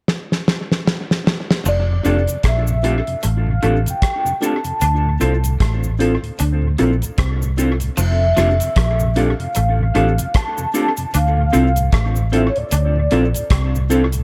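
A velvety, chorused and phased synth lead sings a longing melody over smooth lovers rock reggae, after a damped 70s drum kit with a fat snare opens alone with a fill and is joined at 1.7 seconds by a round, foam-muted electric bass up front, a clean fingered guitar riff in the background and a close, dry cabasa, followed moments later by a soft flute-like tonewheel organ with key click, bright, slightly broken-up guitar stabs through a small old amp, and a mellow tine electric piano, all moving between F6 and Dm7 in this excerpt.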